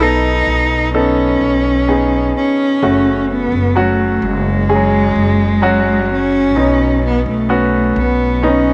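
This short cut from a longing, emotional pop ballad opens with cello, baby grand piano and upright bass all sounding together at a slow 64 BPM in a straight 4/4. The bowed cello carries the melody in a close, up-front voice, its warm tone shaped by vibrato, soft attacks and expressive portamento from a single player. Beneath it, the polished, present piano supplies clear accompaniment across a broad span. The upright bass anchors the low end with a pizzicato part that sounds woody and growly, with the bite of steel strings. The harmony moves from B7 to F#m at 2.8 seconds and settles on Badd9 at 6.6 seconds. A moderate echo-chamber reverb and a small room ambience wrap the intimate trio in a gentle halo.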